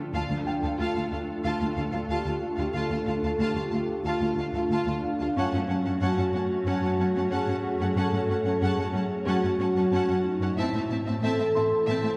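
Mellow French horn section chords sustain through this tense, relentless excerpt of a hybrid orchestral and electronic film score at 92 BPM, moving from Dm to F#m at 5.4 seconds and Am at 10.6 seconds. Beneath them, a close, up-front cello section holds the bass, while an intense viola section, two violin sections carrying a melody and second line with lush vibrato, and a glassy, ethereal FM pad with ensemble chorus fill out the harmony. A dark, very quiet baby grand adds high texture, all set back in the hall of a scoring stage with a 1.8-second reverb.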